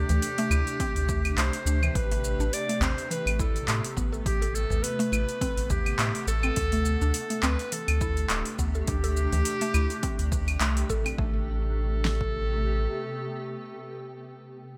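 A breathy clarinet carries the melody from the start, its jazz-style subtone tone clear and present with light vibrato and a trail of delay, floating over an organic downtempo groove at 104 BPM in A dorian with a gently swung 16th feel. Beneath it, a granular cloud pad holds blurred, evolving chords that pump against the sidechain, while a woody, mallet-like synth pluck spins mellow arpeggios colored by chorus, phaser and delay until about 11.5 seconds. A round analog bass sits dark and deep at the bottom, also pumping with the sidechain. Two layers of an overdriven, electronic deep house kit drive the rhythm: claves, handclaps, shaker and metallic hi-hats, joined at 0.8 seconds by a punchy kick and fat snare, all in a small room ambience, with a very quiet, close and dry udu adding earthy acoustic depth. The harmony moves between D7sus4 and Am9, and with its light reverb and bright 1980s-style digital sheen, this meditative excerpt slips into a short new section at 11.2 seconds as the claves, handclaps, hats and shaker drop away, the kick and snare carry on briefly, and the clarinet, pad and bass linger.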